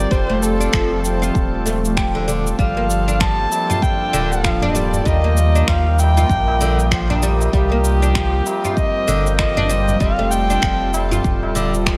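A dark, bowed kamancheh carries this hypnotic, warm organic downtempo excerpt with a close, woody melody full of vibrato and portamento, set over a reedy, breathing pedal harmonium, a smooth detuned sawtooth pad in the background, bright plectrum-plucked fretless oud arpeggios with delay and a round, up-front sine sub bass, the harmonium, pad and bass all pumping to the sidechain, while a deep layered electronic kick and electronic shaker with finger snaps set up a swung groove from 0.1 seconds and a high-tuned, ringing tabla joins in the background at 3.5 seconds.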